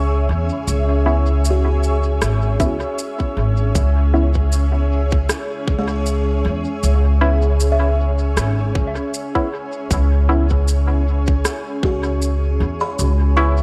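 This hazy, deep ambient dub excerpt opens on a granular cloud pad holding a blurred, detuned C#m7 chord, with a buzzing kalimba spinning soft, hollow-boxed arpeggios in the background through gritty 12-bit sampler texture and analog delay. A pizzicato upright bass sits up front from the start, woody and growly with steel-string bite, anchoring the slow 78 BPM groove in C# minor with a gentle 16th-note swing. At 0.7 seconds an electronic shaker and rim click arrive, tape-tinged and re-recorded in a large room, their taps scattered by dub echo. Filtered sawtooth chord stabs follow at 1.1 seconds, muted and quickly decaying under chorus and their own dub echo. A tight electronic kick drum enters up front at 2.6 seconds, giving the echo-heavy, mostly dry mix a firm, patient pulse beneath the evolving pad.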